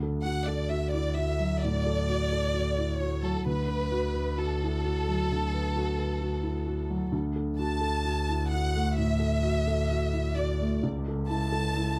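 A felt-muted upright piano and a bowed double bass open this tender, hopeful neoclassical excerpt in D major at a rubato 65 BPM in 4/4, the piano soft and intimate with a thick felt tone while the single bass sounds smooth and distant beneath it. At 0.2 seconds a chamber violin section takes the melody, bowed with expressive vibrato and placed up front, moving through chords of D, Bm7/D and A/C#. The room is dry and the close microphones catch fine detail.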